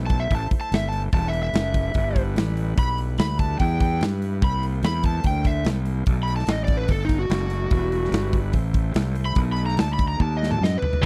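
A gritty tonewheel organ, turning through a slow rotary speaker in the background, and a growly fuzz bass open this brooding, heavy cut of blues rock and southern rock at 146 BPM in E minor, soon joined by a punchy, bright-cymbaled rock kit and an overdriven slide guitar, played with fingerpicks and carrying slapback echo, that takes a solo through minor chords and sharp-ninth dominant turns. The drums close the passage with a fill from 10.2 seconds, and at 11.0 seconds a tight, double-tracked distorted guitar cuts in up front on a single low note. The sound is dry and close, like a 1970s studio room.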